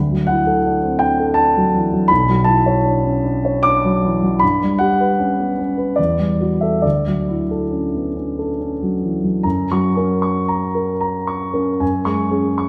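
In a rubato triple metre, this luminous, dreamy impressionist solo piano excerpt places a dark, mellow concert grand up front, its deep bass ringing in a wet concert hall through lush extended chords before the harmony shifts to a new tonal centre at 9.4 seconds.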